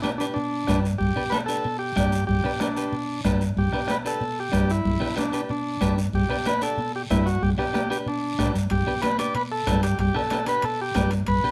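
Set in a moderate studio reverb, this festive, danceable cumbia excerpt in G major moves at 187 BPM, with an up-front, reedy vintage combo organ carrying the melody over clean, compressed electric guitar accompaniment, a dark, round and punchy hollow-body short-scale electric bass, a distant soft-beater bombo, bright, high-tuned congas, a raspy, close guiro, and very quiet ringing metal-shell timbales that join at 8.7 seconds.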